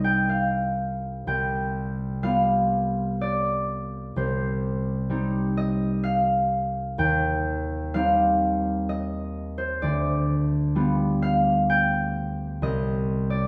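A concert harp, thumb-plucked and ringing, sits up front in this gentle, wistful classical solo piece, spanning C2 to G5. The music moves in a slow 3/4 at around 64 BPM, with a rubato feel that lets the phrases breathe freely. Set in C minor, the harmony rocks between C minor and G7, passing through Cm/Eb at 7.0 seconds and G7/D at 9.8 seconds before settling back on C minor at 12.6 seconds. A wet stone-room reverb with a 1.2-second decay surrounds the harp's acoustic tone, giving each note an airy halo. Lasting about 13.5 seconds, this brief passage is cut from a longer piece.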